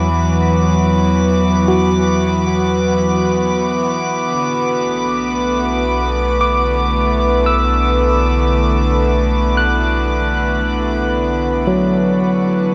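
Ambient and reflective, this serene passage cut from a longer piece sets up-front, gut-toned chamber strings holding dark sustained chords over a round analog bass and a breathing pedal harmonium drone, while a barky tine electric piano spins clean arpeggios through tape echo and a glassy, chorused texture of drifting overtones hovers high above, all soaked in a long, wet shimmer reverb as the harmony moves from Esus2 to Bm7 at 4.3 seconds.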